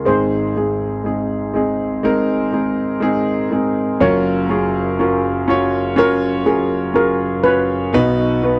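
Emotional and hopeful, this slow pop excerpt at 61 BPM pairs a mellow, shimmering steel pan melody with a slapback echo against a clear concert grand piano accompaniment of deep bass and long sustain, set up front in a dry, close 1970s-style studio sound with light small-room reverb, moving from Ab to Gbmaj7 at 4.0 seconds and closing on Cb.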